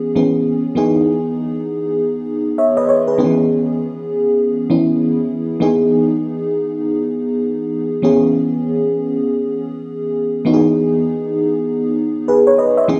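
A lush hall reverb surrounds this punchy, slick R&B excerpt at 99 BPM with a 16th-note swing, where a dark, dreamy FM electric piano with a soft pad layer plays alone up front, its fast attack and chorus-and-tremolo shimmer moving between C#m7 and Emaj7 in a tuning of A4 = 436 Hz.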